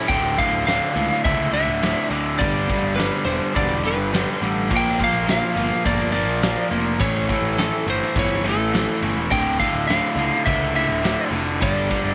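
Gritty and swaggering, this short classic rock excerpt in D harmonic minor moves at 104 BPM in a straight 4/4, cycling through Dmadd9, G, Bb and A. A bright, compressed overdriven electric guitar and a dark, hollow-body overdriven semi-hollow guitar share the riff, while a round, punchy fuzz bass with overdrive holds the low end and a twangy, slightly broken-up lead guitar carries the melody above. A gated 80s kit with a fat snare, punchy kick and bright crash and ride cymbals fills a big, airy room, all bathed in a moderate spring reverb.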